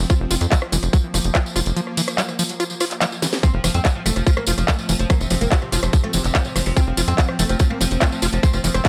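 Psychedelic trance at 144 BPM in a hypnotic mood, built on a tight, up-front electronic kick, a punchy sawtooth sequencer bass, a techno kit with cracking snare, metallic hats, handclaps and rim clicks, a jingly tambourine, a squelchy, gritty acid bass riff with distortion and delay sitting in the background, and a morphing, detuned wavetable pad holding sustained F5 chords through phaser and pumping, with a break from 1.8 to 3.4 seconds capped by a drum fill before a woody, plectrum-plucked fretless oud enters with the melody at 3.4 seconds, its phaser and delay giving this cut from a longer piece a trance-like sway.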